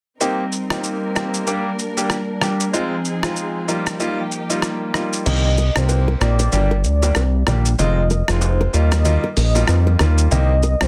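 Dense, heavily limited and lightly reverberant, this hypnotic, smooth afrobeats fragment in C minor moves at 95 BPM in 4/4 with a swung sixteenth-note feel, circling through Cm7, Gm, Fm7 and Ebadd9. A bright, polished concert grand piano plays accompaniment throughout, brilliant with short sustain and a touch of plate reverb. A gritty, compressed sampler-style drum kit with crash, hi-hat, rim click and shaker drives it, its snare softly clipped. A dark, lush bowed string section holds sul tasto chords with vibrato until 5.2 s. At 5.3 s the kick drops out as a fat, detuned sawtooth bass arrives up front with a filter sweep, joined by a velvety, mellow synth lead carrying the melody with chorus, vibrato and plate reverb, plus very quiet, vintage congas and bongos. A fingerpicked nylon-string guitar enters at 5.6 s, playing a full-bodied riff with delay in the background.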